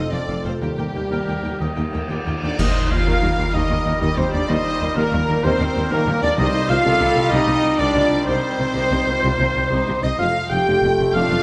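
A heroic adventure film score cue in a swashbuckling mood, moving at 126 BPM in a straight 12/8, where lush, vibrato-rich violins carry the melody over flute, clarinet, a second violin line and an oboe that joins at 1.1 s, with rich violas, thumb-plucked ringing harp arpeggios and sustained chords from a close-miked mellow French horn section and a tight, vintage trombone section. Tuba, distant double basses and soft-attack cellos anchor the bass as the harmony shifts among F, Eb and C minor, while dark clash cymbals and concert bass drum mark a full-band accent at 2.6 s and calf-headed timpani strike a dry hit at 6.4 s. A wet scoring-stage reverb surrounds the orchestra in this fragment cut from a longer piece.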